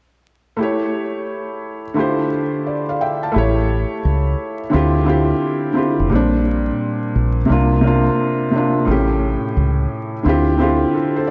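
Soaked in a lush hall reverb with a dreamy haze and vinyl crackle, this fragment of a nostalgic, melancholic hip hop piece moves at 87 BPM in 4/4 with a lazy swing on the sixteenths. A soft, intimate felt-muted upright piano sits up front from 0.6 seconds, cycling through A7 and Dm11 before drifting to Bb69 and C9sus4. At 3.4 seconds a dark, round, punchy dub bass joins, fingered and foam-muted, anchoring the low end beneath the mellow keys.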